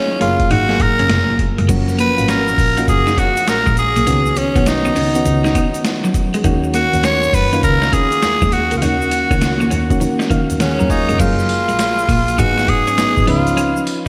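A raspy, up-front tenor saxophone carries the melody over soft, warbling electric-piano-like synth keys treated with chorus and slapback echo, opening a confident, punchy stretch of new jack swing R&B at 101 BPM with a swung 16th feel. A clean, compressed electric guitar riff sits in the background, while a muted, bowed double bass adds a dark, veiled low end beneath a gritty, pitched-down boom bap kit with a thumpy kick and high-tuned snare. A grainy tube shaker joins at 1.7 s, and the keys play a fill at 10.0 s, all set in a big arena-like space with a wet hall reverb.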